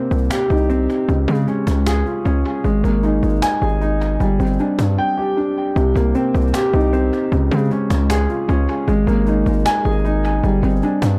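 Hard-hitting yet melancholic, this short cut from a longer trap-leaning hip hop piece moves at 154 BPM in 4/4 with a half-time feel, set in C minor. A dark, mellow concert grand piano carries the accompaniment from the opening moment, its boxy, deep-bottomed tone dulled by a low-pass filter and trailed by dub echo. Entering at 0.1 seconds, a distorted 808-style bass sits up front beside the piano, an aggressive sine core with a noise layer, a fast attack and a decaying tail. A snappy acoustic cajon with snares, played with soft hands in a live room, sits far lower in the mix and carries its own dub echo. The harmony cycles twice through Cm7, Db, Absus2 and Gsus4, with the second pass beginning at 5.8 seconds, all wrapped in an echo-heavy studio reverb.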